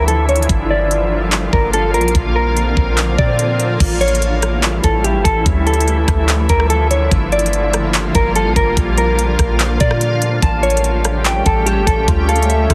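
An up-front trap kit with a knocking kick, crisp hats, handclaps, rim clicks and crash drives this melancholic, spacious cloud-rap excerpt in a half-time feel, over a deep, round 808-style bass. A dark, clean, fingered electric guitar carries the melody through delay, while a shimmering, ethereal pad holds sustained chords with chorus, built-in reverb and sidechain pumping, and a background electronic swell sounds between 2.6 and 3.8 seconds. A ringing, fingerpicked Celtic harp adds arpeggios with delay from 10.4 seconds, all within a dry, heavily compressed, radio-like sound.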